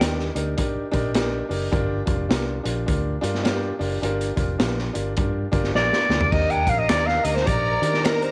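A lightly reverberant studio sound frames this uplifting, danceable slice of 1960s-style soul, cut from a longer piece, where a crunchy breakbeat drum kit with a punchy kick and dark, rolled-off cymbals swings alongside a woody upright piano and a round, foam-muted fingered electric bass. A raspy, growling alto saxophone with slapback echo sounds briefly at the very start, then returns to the melody at 5.8 seconds in the middle of a drum fill, sounding roomy yet up front. Lush bowed strings with vibrato add a second line from 6.3 seconds, and a very quiet finger snap joins at 6.9 seconds.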